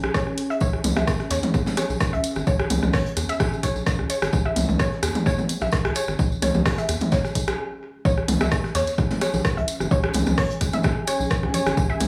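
A punchy, tape-warm electronic kick drives a lightly swung 129 BPM minimal techno groove in C# minor, joined by the hi-hat and rim click of an analog drum machine, an overdriven organic electronic kit of congas, rim click and toms, a soft brush kit tucked in the background, and a jingly acoustic tambourine from 0.6 seconds. A rubbery, nasal square bass pumps beneath a squelchy, resonant blip pluck riff with chorus and digital delay, while a deep, moody ambient pad hovers low in the mix. The cool, clinical mood holds until a brief stop at 7.6 seconds gives way to the drop at 8.1 seconds in this excerpt from a longer piece.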